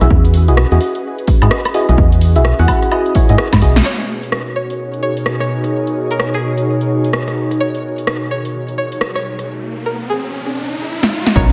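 A dreamy, reverb-soaked mix opens this sunny, bouncy two-step UK garage excerpt at 128 BPM in B major, where an ethereal background pad, mellow chorused chord stabs, a hollow organ-like FM bass up front, a punchy tape-warm kick and a house kit with filtered hats and snare carry the Emaj9 opening before the kick drops out at 3.6 seconds and bass and stabs at 3.8 seconds for a twangy, phased resonator pluck melody over Bmaj9 with a breathy detuned pad until 9.5 seconds, and an electronic riser builds from 9.0 seconds into a drum fill.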